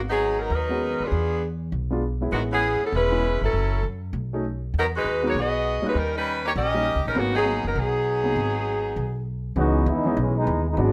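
A wet studio reverb and a rough home-demo mix frame this short cut from a longer big band swing piece in G# minor, moving at a brisk 199 BPM with swung eighths and a sultry, dramatic mood. A woody, dark upright bass, plucked on steel strings, sits up front from the very start. A saxophone section carries the melody with vibrato and a warm ensemble tone, joined almost at once by a present, polished grand piano in accompaniment. The harmony travels through rich extended chords, opening on G#m11 and passing through E7b9, Amaj9 and D#7 before settling on C#m9. At 9.6 seconds the saxophones have dropped out and a mellow trombone section takes a brief solo, its vibrato-laden sound distant and roomy even though it is placed up front.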